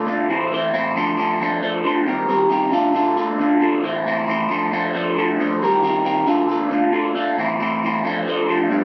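In a straight 4/4 feel, this jangly, upbeat rock clip of 8.8 seconds features a lone electric guitar through a small old amp, its twangy, slightly broken-up, lo-fi tone sitting up front with phaser and analog delay in a moderate studio reverb as it cycles through Am, F6, Eb6 and Dm.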